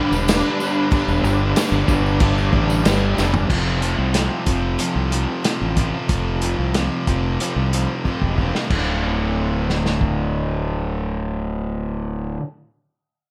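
Gritty and swaggering, this classic rock clip opens with a distorted bluesy lead guitar carrying a short melody above a background octave-fuzz lead guitar's second line, joined by a woody upright piano, a faint rotary-swirled tonewheel organ and a jingly tambourine, all of which drop away by 3.5 seconds, while an overdriven electric guitar and a raw garage guitar set back in the mix grind out riffs over a growly, up-front fuzz bass, a bright but very quiet picked steel-string acoustic guitar, and a muffled, lo-fi vintage drum kit with a punchy kick that plays two fills before stopping at 10.2 seconds, all within a lightly reverberant space over a G, F and D minor progression.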